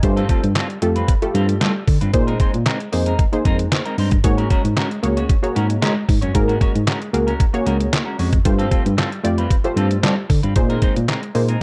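A detuned 8-bit digital drum machine drives this danceable, slick early-eighties boogie funk in a straight 4/4, its thumpy kick, medium-tuned snare, hi-hat and handclaps sitting up front with an electronic, sampler-style edge. A worn, slightly out-of-tune tine electric piano carries the bass line through light overdrive, while a punchy, nasal polysynth comps with detuned sawtooth and pulse-wave tones, a sub octave, a filter pluck with a fast attack and chorus. A dark, clean semi-hollow electric guitar plays a fingered riff bathed in lush chorus, all set in digital ambience with a dark production over sus4 ninth chords across this short cut from a longer piece.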